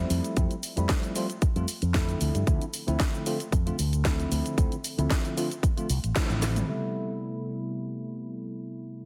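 Heavily compressed, radio-like sound with light reverb frames this cosmic, sleek nu-disco passage at 114 BPM in A minor, with a light swing on the sixteenths, cut from a longer piece. A clean, up-front tine electric piano through a combo amp carries the Fmaj7 and Dm7 chords with lush chorus, sidechain pumping, a low-pass filter and digital delay. Beneath it sit a bright, direct fingered bass with an envelope filter, a punchy electronic kick, and a layered house kit with hi-hat, shaker, toms and a cracking snare. After a band accent at 6.2 seconds and a drum fill at 6.4, the piano continues alone from 6.7 seconds on an Am9 chord.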